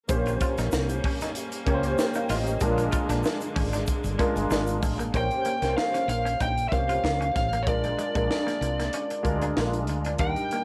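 A lightly swung 95 BPM groove in 4/4 from a crisp fusion drum kit with a high-tuned snare and tight kick drives this nocturnal, bittersweet 1980s jazz-funk pop excerpt, where a round fretless bass and a long-sustaining grand piano with ensemble chorus sit up front over Bbm69 and Bb7 chords, a clean, compressed semi-hollow guitar riff shimmers through lush chorus, intense bowed strings and a grainy egg shaker hover in the background until 5.1 seconds, and then a dark, overdriven lead guitar takes the melody at 5.2 seconds, all with the soft haze of a home cassette recording in a moderate studio reverb.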